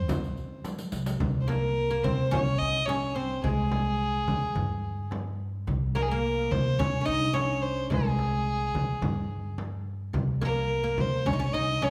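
Arabic maqam ensemble music in C maqam kurd at 108 BPM in a straight 4/4, passionate and festive, with a reedy, gut-string violin up front carrying the melody over a woody, double-strung oud's second line and a growly pizzicato upright bass, while a deep frame drum and a crisp, very quiet metal-shell darbuka drive the percussion, briefly joined by a bright-jingled riq from 0.1 to 1.2 s around a drum fill at 0.7 s, the ensemble sitting in the wet reverb of a recital hall in this passage cut from a longer piece.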